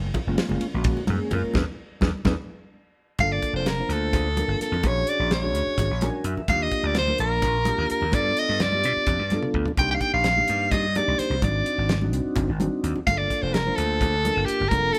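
An edgy, up-front soprano saxophone takes the lead at 3.2 s, playing a jazz-style solo with vibrato in G minor over an intense, slick electric jazz fusion groove at 255 BPM in 7/8. Beneath it, a punchy, amped vintage slap bass and a dry 70s drum kit with a fat snare and tight kick drive the music, while bright, hard-hand congas sit in the background and a soft, flute-like tonewheel organ with a slow rotary speaker adds accompaniment and a brief fill. The opening bars bring a band accent and drum fill before the solo begins, all captured as a live band in a stone room with moderate reverb, in an excerpt cut from a longer piece.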